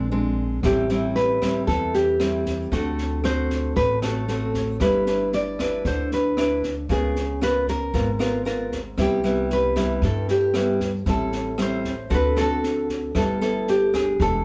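Bossa nova with a relaxed, romantic mood, set at 115 BPM in G major, with a bright, fingerpicked nylon-string guitar carrying the melody up front over a second, full-bodied, deep classical nylon-string guitar whose fingerpicked accompaniment carries audible finger squeak. A woody, thumpy pizzicato upright bass on gut strings sits underneath, and a dark, smooth jazz kit joins at 0.6 s with a punchy kick, rim clicks and a high-tuned snare. The band plays live in a small room with moderate reverb, moving through chords such as Am7, D7, G6, C#6 and Cmaj7 before settling on G69.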